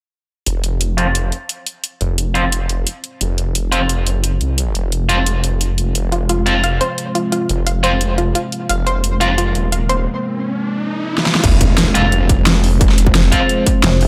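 Lightly reverberant and tense, this dark technical drum and bass excerpt layers a snarling, growling distorted saw bass and a dubstep drum kit with a huge snare and bright hats alongside tight, bright distorted guitar stabs, a deep, moody ambient pad under a filter sweep, and round analog pluck arpeggios from 6.1 seconds, before a background riser and impact carry into the drop at 11.4 seconds, where a distorted electronic kick thumps in and a heavy, pulsing pluck wobble bass arrives at 13.8 seconds.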